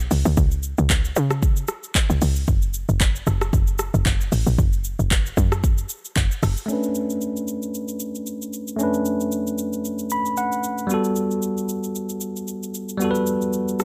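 A dry sound frames this soulful, hypnotic amapiano excerpt, opening on a drop where a woody, punchy log drum bass with a fast, decaying attack pushes up front over a swung deep house kit of deep kick, dark hats, handclaps, rim click and shaker. The bass stops at 6.6 seconds, and at 6.7 seconds a bell-like, bright tine electric piano enters through a low-pass filter with a filter sweep, voicing Bm9 and then Gmaj9. The kit carries on beneath it as the electric piano plays a short fill at 9.8 seconds.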